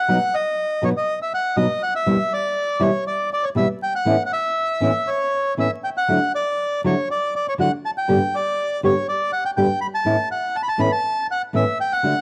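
This home recording on cassette has a lo-fi character, with vinyl crackle and a moderate small-room reverb. It is a brief, passionate and nostalgic tango fragment, cut from a longer piece, in 4/4 with a free, rubato feel and tuned to A4 = 436 Hz. The bandoneon carries the melody in its upper register from the first moment. Its reedy, full tone is close-miked, dry and up front, with a tape-worn color. The nylon-string guitar enters at 0.1 s with a classical, thumb-plucked accompaniment that is equally forward and sits in plate reverb. The harmony moves from B through Em/B, Aadd9, Dadd9 and Gadd9 before returning to Aadd9 at 10.1 s, and both instruments end near 12.2 s.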